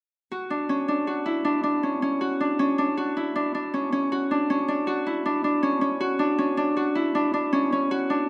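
In a straight 5/4 at 158 BPM, this restless yet hopeful contemporary instrumental fragment in D major sets a bright, ringing Celtic harp up front, fingerpicking arpeggios on a Dmaj7 chord from 0.3 to 8.3 seconds within a dark production and a wet recital-hall reverb.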